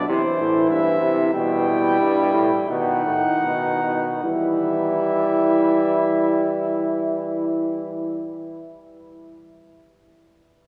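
A wet cathedral reverb with a five-second tail surrounds this short, solemn passage from a classical imitative canzona for brass quartet in E minor, which moves in a straight 4/4 between 72 and 100 BPM and slows over its first 4.2 seconds before a new section begins. A mellow, close-miked cornet carries the melody up front while a distant, roomy flugelhorn with light vibrato sings a second line in the background, a warm, vibrato-tinged trombone supplies accompaniment, and a bright, vintage-toned bass trombone anchors the bass. The contemplative harmony passes from C through Em/B and B before settling on Em at 4.2 seconds.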